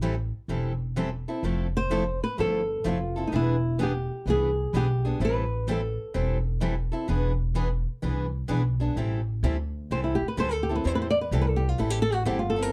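Two picked steel-string acoustic guitars and a pizzicato upright bass open this fiery, swinging slice of jazz manouche, cut from a longer piece. One guitar has a bright, boxy parlour tone and the other a full-bodied jumbo sound with fresh strings and audible finger squeak, while the gut-string bass sits up front, woody and thumpy. At 1.8 seconds a fingerpicked flamenco guitar enters with the melody, its warm tone up front and touched with finger squeak, over a progression that moves from Am7 through Fmaj7 and E7#9, back to Am7 and on to E7. The jumbo-toned guitar drops out at 8.6 seconds. As the second section begins, the flamenco guitar returns at 9.9 seconds for a solo over Am7, backed by the remaining guitar and the bass. Light reverb and a dark, warm production round out the recording.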